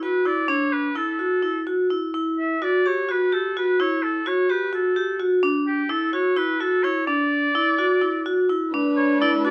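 Set in a straight 7/8 at 255 BPM in eighths, this hopeful, shimmering chamber piece in D major, cut from a longer work, opens with a clear, lightly vibrato oboe melody up front over ringing, metallic hard-mallet vibraphone arpeggios with a vintage, band-limited tone, moving through D69, Em69 and Dadd9 before a distant, roomy French horn and a dark, smooth bowed string section enter at 8.7 seconds on Bm7 in light reverb.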